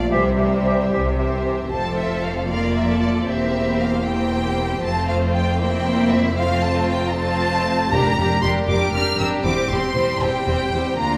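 A lively, cheerful classical-period orchestral movement in a quick 6/8 at 78 BPM opens with a brief chord from a dark French horn section, a bright clarinet, a very quiet hollow flute and a background bassoon over the strings, then from 1.7 s the rich violin melody carries on above a second violin line with portamento, soft-edged dark violas and lush cellos and double basses, with very quiet round timpani strokes at 1.7 s and 7.9 s, all set in a wet recital hall reverb.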